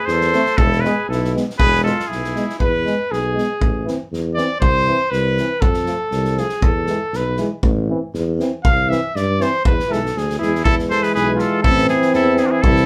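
A live-sounding room with moderate studio ambience holds this Balkan brass band, caught playing together in a single space and cut from a longer piece. The mood is fiery and virtuosic, driven by a straight 2/4 pulse from an acoustic drum kit with a fat snare and punchy kick. A bright, nasal cornet with a straight mute leads the melody up front for the opening 2.6 seconds. A clear, smooth-topped trumpet then takes a solo from 2.6 to 10.7 seconds, with the cornet returning at 10.4 seconds. Underneath, a close-miked tuba anchors the bass with a mellow tone and light vibrato. A mellow euphonium and a warm trombone with vibrato fill out the accompaniment, and all the brass is played in a classical style over chords that circle between A minor, C, F and E.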